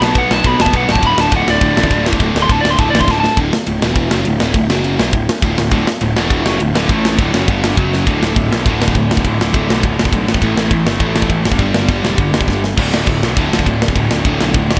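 A lightly reverberant mix puts an up-front, polished metal drum kit with bright cymbals and a tight kick ahead of background double-tracked guitars, one biting and overdriven, the other bright and distorted, in this energetic, rebellious punk rock excerpt at 204 BPM in D major. A slightly broken-up, compressed lead guitar solos on the melody until 3.4 seconds, while a growly fuzz bass holds the low end and the distorted guitar drops out from 3.2 until 5.7 seconds. Drum fills at 3.1, 7.9 and 12.5 seconds push the piece through its driving riff sections.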